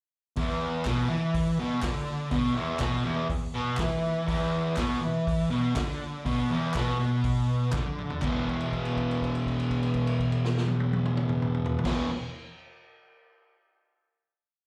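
A straight 4/4 stomp at 122 BPM drives this raw, menacing garage rock piece, heard live through a club PA with moderate reverb, as an up-front, double-tracked fuzz guitar with slapback echo picks a low single-note riff over a vintage drum kit with a punchy kick and dark cymbals and very quiet, hollow group handclaps, until a drum fill at 7.7 seconds leads into a final chord held from 8.2 seconds.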